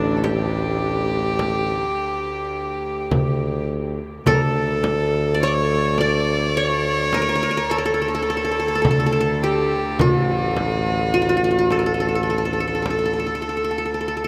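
This stately, passionate Arabic maqam ensemble piece, cut from a longer work, moves in a straight 10/8 metre. A plucked qanun carries the melody with a bright-edged, triple-string shimmer, and a single up-front violin plays a second line beside it, its tone nasal and earthy with light vibrato and an airy bow. Beneath them, a solo tuba gives a warm, vibrato-tinged bass in a pop style, stopping at 13.3 seconds. A bowed chamber cello section holds a low drone throughout, reedy and close, with a period-style gut-string tone. Entering at 0.2 seconds, a crisp metal-shell darbuka sits in the background, with a deep, large frame drum played very quietly by hard hands. The ensemble is bathed in a huge, wet reverb that places it in a vast, echoing space.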